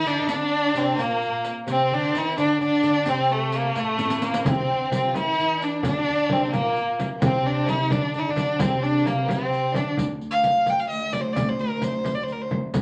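A wet, club-like reverb surrounds this fragment of a longer Persian modal ensemble piece in a straight 6/8, its mood longing and melancholic. Up front, a single bowed violin carries the melody with a soft attack, expressive vibrato and sliding portamento, its tone warm. Behind it, a clear, focused studio violin section adds a close, bowed second line with vibrato, joined by a fingerpicked acoustic flamenco guitar, and both drop away at 10.0 seconds. A small-room riq with bright jingles and hard hands ticks along in the background throughout, and after a drum fill a deep, large frame drum enters at 4.5 seconds. In the closing stretch, a bowed studio cello section holds an even, biting drone beneath the solo violin.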